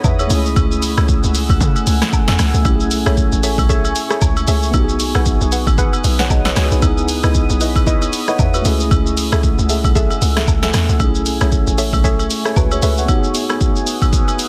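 A dense, heavily limited modern mix in a digital ambience opens this soulful, hypnotic amapiano excerpt, set at 115 BPM in 4/4 with a 58% swing on the sixteenths. Up front, a layered electronic deep house kit lays down a deep kick, a punchy soft-clipped snare, rim clicks, hi-hat and shaker, with a small-room character. Underneath, a hollow, bouncy log drum bass with a fast attack and decaying tail carries the low end until 13.1 seconds, while a mellow tine electric piano plays warm, clean accompaniment through its built-in speakers. A deep, moody sawtooth pad with a sub octave sustains the harmony behind them, its slow attack softened by chorus and reverb and pumped by sidechain. From 3.1 seconds a soft, round pluck adds short, dark stabs treated with chorus and digital delay, as woodblock, agogo bells, maracas and group handclaps sit close and dry in the background. The harmony cycles through F#m9/C#, B13sus4, G#m7 and C#m9, closing on G#m7/B.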